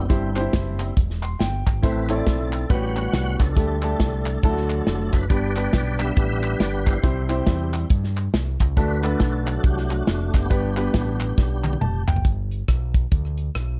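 A tonewheel organ with slow rotary speaker, light overdrive and chorus vibrato opens this uplifting, reverent uptempo gospel excerpt in G major at 138 BPM, taking the lead with full sustained chords over a gritty, up-front picked electric bass, while a baby grand piano with short sustain, an airy, punchy country drum kit and hollow, close group handclaps join almost at once. The swung 4/4 groove moves through C, Am, A13, Dsus4 and D before settling on G, with piano fills near 1 and 12 seconds and a drum fill leading up to 12 seconds. After the organ drops out, bass and drums carry a brief closing passage to 13.8 seconds, in a dark, warm production with little reverb.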